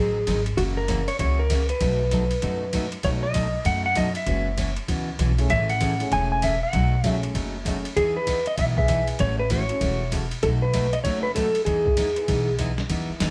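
A brisk 195 BPM swing in 4/4 drives this cheerful western swing passage in E major, with a gritty, overdriven sampler-style kit of thumpy kick, medium-tuned snare, hi-hat and ride sitting under a woody pizzicato upright bass on gut strings. Up front, a clean, compressed lap steel carries the melody with slide and volume swells, while a bright, full-bodied picked dreadnought acoustic guitar accompanies through chords such as F#9sus4, B13 and Emaj7. A dark, mellow upright piano with long sustain joins at 3.0 s and drops away at 9.8 s, and the band sounds live in one room with moderate studio reverb.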